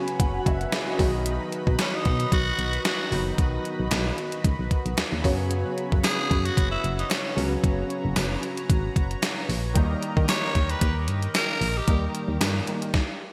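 A gated 80s digital drum machine drives this nostalgic, urgent 1980s-style pop excerpt at 113 BPM in 4/4 with a light 16th-note swing, its thumpy kick and gated-reverb snare sitting up front alongside hi-hat and tambourine, joined by a very quiet, crisp group handclap and a punchy, round FM bass. A concert grand piano with deep bass and long sustain opens with a fill in the first 1.3 seconds and carries the accompaniment through ensemble chorus, while a shimmering pulse-width pad holds sustained chords over the F#sus4, B and D# changes. From 1.8 seconds a raspy, gritty tenor saxophone with vibrato and digital delay takes the solo melody in a lush hall reverb and bright digital production.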